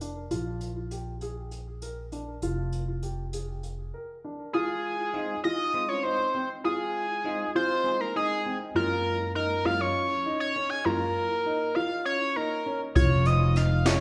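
A dark, mellow grand piano opens with delayed arpeggios over woody pizzicato upright bass and brushed drums with a boomy kick in a brooding, tense progressive piece in 7/8, until the rhythm section drops out at 3.9 s and an edgy, tearing sync lead with chorus takes the melody at 4.5 s, soon joined by a bell-like electric piano with phaser, before the bass and drums return at 13.0 s, all set in a live room with a lush large-studio reverb.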